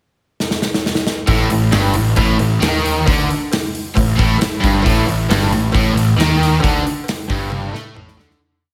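Classic rock with a sunny, confident mood, moving at 135 BPM in a straight 4/4 feel. A big rock drum kit opens the piece with a fill from 0.4 seconds, its punchy kick and medium-tuned snare sitting up front in a big groove with hi-hat and toms. At 1.3 seconds the riff arrives over a D#maj7#11/G chord, carried by three guitars in the background: a bright, crunchy overdriven guitar and a biting, double-tracked overdriven guitar, both with slapback echo, plus a distorted electric guitar, all playing a single-note riff between G2 and A3. A fuzzy, overdriven picked electric bass drives eighth notes beneath them, doubling the guitar riff, while a very quiet, close and dry cowbell adds a metallic pattern. The whole piece carries a big arena sound in a moderate concert hall reverb, and another drum fill arrives as the music fades out toward its end at 8.4 seconds.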